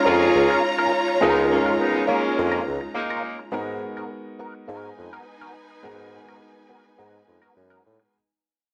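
Lush, expressive bowed strings with vibrato and portamento carry the second line of this warm soul excerpt at 104 BPM with a light sixteenth-note swing, over a mellow, up-front bassoon bass line, clear concert grand piano accompaniment with audible action noise, a bright, twangy direct electric guitar riff colored by wah and harmonic tremolo, and tight vintage horn stabs that stop at 3.4 s, set in a dry, close 1970s-style room as the chords move from Db6 to Abm9 at 3.5 s under a fade-out.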